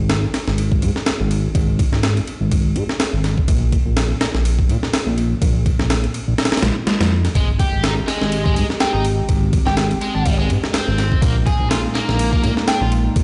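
A swung, funky breakbeat of gritty, compressed sampler-style drums, with a thumpy kick, high-tuned snare and ride cymbal, drives this energetic breaks excerpt alongside a fat, detuned sawtooth bass with tube saturation, before a biting, double-tracked overdriven guitar riff with dub echo arrives at 7.4 seconds, a warbling, nostalgic lo-fi pad with sidechain pumping enters in the background at 8.0 seconds, and a soft FM bell melody with chorus, old-record grit and dub echo chimes in at 8.8 seconds, the mix sitting in a large studio reverb.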